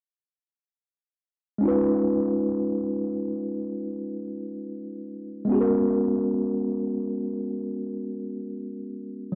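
Moody and sensual, this short R&B excerpt drifts in free time in G# dorian. A mellow tine electric piano carries the accompaniment from 1.6 to 9.3 seconds, sitting between G#3 and B4. Its tone is clean and up front, heard through built-in speakers, with a light reverb around it. The harmony moves from a C#9 chord to a G#m11 at 5.5 seconds, giving the passage an unhurried quality. The recording itself is dry and gritty, lending a raw, close edge to the soft keys.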